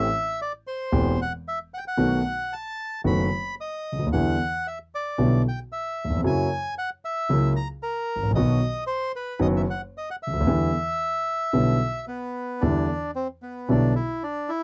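A reedy, dark bandoneon carries the melody up front in this passionate, tense tango excerpt in E minor, its smooth line moving with a rubato feel over a moderate 112 BPM pulse in 4/4. A warm concert grand piano accompanies, also up front, with deep bass and short sustain, through a progression that starts on Am7 and passes through B7 and F#7. The dry, close 1970s-style studio sound carries light reverb, and the piano stops at 13.9 seconds, leaving the bandoneon alone until 14.6 seconds.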